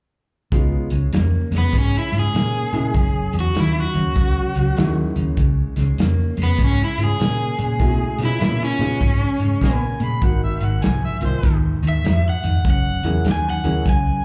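Heard live through a club's PA, this laid-back, swaggering electric blues shuffle excerpt sets a crunchy overdriven guitar melody, entering at 1.6 s, over a dark, spring-reverbed clean guitar riff, a round, foam-muted fingered bass, a tight soul drum kit with rolled-off top, and woody, boxy upright piano accompaniment under slapback echo, while a vintage harmonica with tongue slaps and scooped notes adds a brief second line from 9.6 to 11.6 s.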